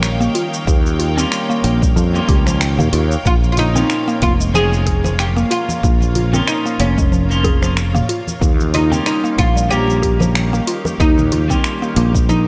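Organic downtempo at 93 BPM with a light 16th-note swing, this mystical, meditative passage moves between Eb7 and Bbm over a growly, up-front fretless electric bass, a punchy electronic kick that enters at 0.7 seconds, and a deep house kit of finger snaps, hi-hat, shaker and toms set in studio reverb. A woody, round synth pluck spins arpeggios through chorus, phaser and delay, while a clean picked electric guitar with vibrato and delay and a distant, biting string section holding sustained chords both breathe with sidechain pumping. At 3.3 seconds a bright, plectrum-plucked oud takes the melody with delay, joined by very quiet, close and dry congas and bongos, all within a light reverb in a section cut from a longer piece.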